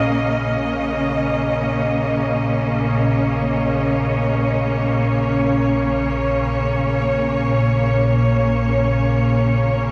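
From the opening moment, a bowed cello section holds sustained chords up front, its playing intense and rich with vibrato and a smooth top, while a deep, ominous drone rumbles underneath. This dark ambient excerpt, cut from a longer piece, feels desolate and unsettling as it drifts in free time over a single minor chord. The drone blends triangle and sawtooth tones with a slow attack and long release, and its own reverb and phaser lend it a shadowy, shifting quality. Both parts sound throughout, and the whole mix is soaked in a huge reverb with a 7.7 second tail. A cassette tape character and a top end that stops at 10.7 kHz give the sound a dreamy, hazy cast.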